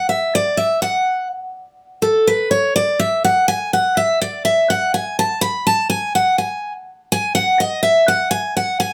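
Bluegrass at 124 BPM in 3/4 with a straight feel, virtuosic and lively, cut from a longer piece. A picked steel-string acoustic guitar plays solo for the full 8.9 seconds, its bright dreadnought sound full-bodied and up front with the crispness of fresh strings, moving through the range from A4 to B5. The studio ambience is wet, with a short, roomy decay around the instrument, and the short phrase is stated once and then repeated from 4.0 seconds.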